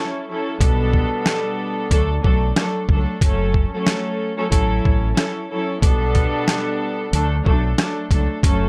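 A gritty, pitched-down boom-bap drum kit sits up front from 0.6 seconds, its thumpy kick, medium-tuned snare, rim click and hi-hat compressed and swung at 92 BPM in this moody, dark hip-hop fragment from a longer piece. Opening alone at 0.0 seconds, a close, reedy string section with a period-style gut-string tone plays bowed ensemble chords through cassette-tape coloring, high- and low-pass filtering and plate reverb, moving through A6, Gadd9/B, D and F#m. Beneath it, a round, punchy fingered electric bass adds a dark, direct-amped low end, all set in a light reverb.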